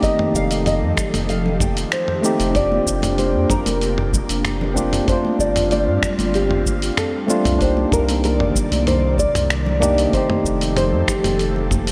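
Wistful and smooth, this sunset chillout excerpt moves at 95 BPM in a straight 4/4, its chords drifting from F9 through Bb6/F, G9sus4 and Cm9 before returning to F9. A thumb-plucked nylon-string guitar carries the melody with audible finger squeak, chorus, delay and shimmer reverb, over a clean tine electric piano, an airy, breathy pad with phaser and 12-bit sampler grit, and a round, nasal analog bass entering at 0.3 seconds. A gritty, compressed sampler-style kit of finger snaps, hi-hat, shaker and toms joins a deep electronic kick and very quiet, high-tuned congas, all bathed in a dreamy cathedral reverb.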